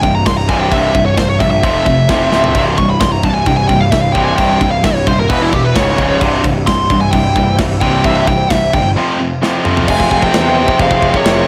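Heavy metal excerpt with a relentless, heavy mood, where an up-front, dark high-gain lead guitar with distortion and digital delay solos over two picked rhythm guitars, one bright and overdriven and the other scooped and high-gain in the background, a growly fuzz bass, and a tight studio-room drum kit with bright cymbals and drum fills at 2.3 and 9.4 seconds, while a veiled, muted string section enters very quietly at 2.5 seconds and a faint bluesy overdriven second lead guitar joins at 9.9 seconds as the harmony turns to F minor, all in light reverb.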